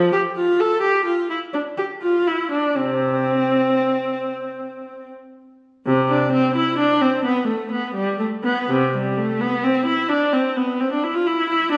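A single viola carries this radiant, dance-like baroque-style suite movement alone, its bowed tone warm and expressive, shaded with vibrato and gliding portamento. Set in C major and a lilting 12/8, the music moves at roughly 76-88 BPM counted in dotted quarters, with a rubato feel that lets the phrases breathe. The line ranges from C3 up to A4, and the viola sits up front even as the listener seems placed further back in the room. A wet stone room reverb with a 1.4-second tail lends the solo a resonant halo. Cut from a longer piece, this passage runs just under 12 seconds, moving into a new section at 5.9 seconds.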